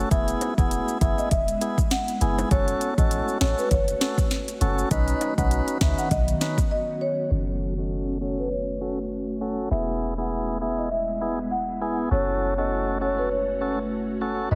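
Heavily compressed with a radio-like sheen and a lush digital hall around it, this hypnotic, sultry dancehall passage, cut from a longer piece, moves at 100 BPM in F# dorian with a light swing on the sixteenths. An electronic afro-pop drum kit sits up front with a deep kick, sharp snare and smooth hats, joined by close, dry maracas and timbales in the background, before both drop out at 6.7 seconds for a brief break. Underneath, a clean, boomy sine-like 808-style bass decays darkly while a lightly overdriven tonewheel organ with vibrato carries the accompaniment near the front. An ethereal, airy pad of detuned sawtooth and triangle layers, with a noise layer, ensemble chorus and sidechain pumping, holds slow-blooming chords. Over this, a mellow marimba with soft mallets plays a round melody through delay. From 7.3 seconds a filter sweep runs through the second section as the chords move between F#m and E.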